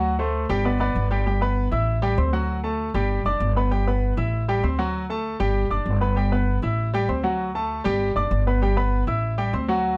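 A clear baby grand piano and a woody upright bass begin together in this festive, danceable salsa fragment, cut from a longer piece. The piano carries the accompaniment, sounding polished and present from the middle register up into its upper range. Beneath it, the pizzicato bass on gut strings gives a thumpy, dark foundation, sitting up front alongside the piano. After a brief opening turn from D7 to G, a new section arrives at 1.3 seconds and settles into a repeating cycle of Gadd9, Am7 and D. Light reverb surrounds the pair in a dark, warm production, with the piano stopping at 9.9 seconds just before the bass.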